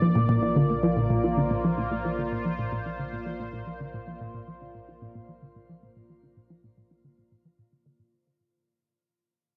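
A squelchy, detuned blip pluck leads this brief cut from a longer piece of ambient, sequencer-driven space music, playing a riff between Bb2 and F3 with a juicy, fast-attack bite and a filter sweep on its arpeggio sound, all bathed in chorus, phaser, delay and shimmer reverb. Alongside it, a sweeping resonant pad holds sustained chords from Bb3 to D5, its sawtooth and triangle layers evolving through a filter swell, bright and up front in its own chorus and shimmer reverb. Deep in the background, a round sine sub bass sustains a low Bb1, mellow and deep. The tempo sits at 111 BPM in a straight 4/4, anchored on a Bb chord, and the whole 8.1 seconds carries a fade-out, with the sub bass fading as well. A plate reverb with a 3.0-second tail gives the dark production an expansive, cosmic sense of space.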